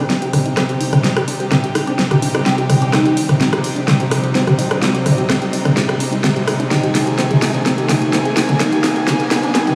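A straight 4/4 pulse at 127 BPM drives this melancholic melodic techno build-up in C minor, cut from a longer piece: an up-front deep house kit with a fat snare, hi-hat, rim click and toms plays a drum fill throughout, while a lush, detuned sawtooth pluck arpeggiates through digital delay in the background. A floating chamber string section holds soft-attack, low-passed chords that move from Cm to Ab/C at 6.7 s, and a very quiet, nasal, string-like drone enters at 0.3 s, joined by a faint electronic riser at 1.4 s. A mellow, chorused analog lead with sub-octave weight sings on Eb4 briefly at 2.9 s and again from 6.7 s under a filter sweep, and the mix sits in a huge, wet stone-room reverb, as if played over a big sound system in a bare room.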